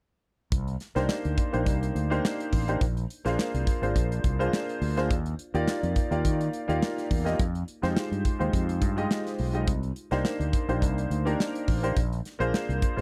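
A punchy fretless electric bass sits up front in this excerpt of polished 1980s jazz-funk pop, entering at 0.5 s alongside an airy modern studio drum kit with a medium-tuned snare, hi-hat and a punchy kick. From 1.0 s a worn baby grand piano with long sustain and analog chorus adds accompaniment. At 105 BPM in 4/4 with a light sixteenth-note swing, the urban, slick groove moves through Cm9, Bb9, Ebmaj9 and Fm9 in C minor, captured as a dry, close 1970s-style studio recording.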